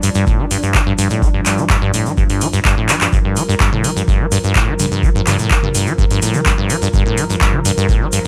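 A squelchy, resonant sawtooth acid bass sits up front, its bright riff running from G2 to G3 with filter sweeps, tube saturation, subtle chorus and analog delay giving it a hypnotic, gritty edge. This short cut from a longer acid house track moves at 126 BPM in a straight 4/4, holding on a Gm7 chord in G minor. Underneath, a booming analog drum machine with metallic hats, handclaps and toms is overdriven and up front, and it throws in a drum fill at 2.9 seconds. A deep, overdriven electronic kick drum joins at 0.3 seconds, and both drum parts were re-recorded in a small room. A smooth, detuned pad with a soft attack holds sustained chords, thickened by chorus and pumping against the sidechain, while a grainy acoustic egg shaker sits in the background. The whole recording is dry and gritty, touched only by light reverb.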